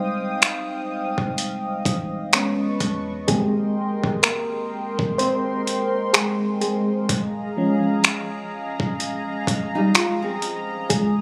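Contemporary R&B with a tender, smooth mood, this short passage cut from a longer piece moves at an unhurried pace with a gentle swing on the sixteenths. An FM electric piano leads throughout, up front and mellow, with a warbling vintage tone, a faint noise layer and notes that strike quickly and then decay, moving through Fm9, Amaj9, Abmaj9 and Eb9sus4. Behind it, a chorused pulse-width pad holds shimmering, detuned retro chords with a slow attack, while a soft 808-style bass sits deep, round and dark in the background. From 0.4 seconds a dusty, sampler-style drum kit of finger snaps, hi-hat and a thumpy kick sits up front, compressed, gritty and overdriven as if re-recorded in a small room. Near the close, at 9.8 seconds, a fingerpicked nylon-string guitar adds brief woody, full-bodied arpeggios with old-string character and a touch of delay. The whole mix has the feel of a phone recording in a club, wrapped in light reverb and digital ambience.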